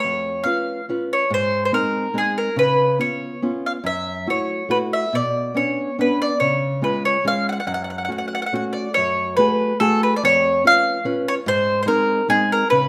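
A picked mandolin carries the melody, its woody double strings up front and singing between G#4 and F#5 across the whole 12.9-second fragment. This is wistful, romantic Italian folk in 3/4 at 142 BPM, played with a rubato feel in F# harmonic minor, tuned slightly low to A4 = 437 Hz. A small-sounding, fingerpicked nylon-string guitar sits up front alongside it, a touch quieter, in accompaniment, spanning E#2 to B4 with a warm tone. The harmony moves through chords such as C#7/E#, G#, F#m7, Bmadd9 and F#m, and the opening idea begins again at 9.0 seconds with an F#madd9 before returning to C#7/E# and G#. A moderate recital-hall reverb gives both instruments an intimate sense of space.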